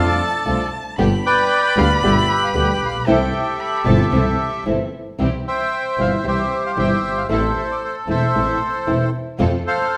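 A nostalgic, playful tango excerpt in C major opens at 114 BPM with a rubato feel, as a reedy bandoneon carries the melody up front over fingerpicked acoustic flamenco guitar, a focused bowed double bass and lush, smooth string stabs set in the background. A single violin adds an expressive second line with vibrato and portamento until 4.9 s, after which the bandoneon and the rest of the ensemble continue through a repeat of the opening section. The whole cut is bathed in the wet reverb of a recital hall or church.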